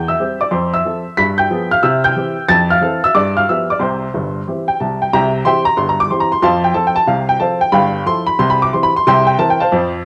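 A clear, woody upright piano plays solo and up front, natural in tone with short sustain and a cassette-tape grain, in this exuberant, swinging stride jazz excerpt at 183 BPM in C major, its chords running from C/E through Fmaj7 and G7b9 to a turn onto C7 at 9.1 seconds, captured as a home cassette recording with moderate spring reverb.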